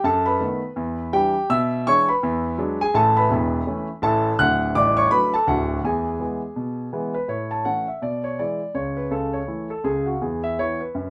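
Exuberant and playful, this short excerpt of stride jazz piano swings at 165 BPM in A major, with a lone concert grand playing solo from the start to 11.1 seconds across a range reaching from A0 up to F#6. The piano sounds warm, open and up front, with a deep bass, set in a moderate studio reverb within a rough home demo mix. The harmony moves through B7/F#, Em7 and E9 before settling on A, D and E, and a second section from 7.3 seconds closes on an E5 chord.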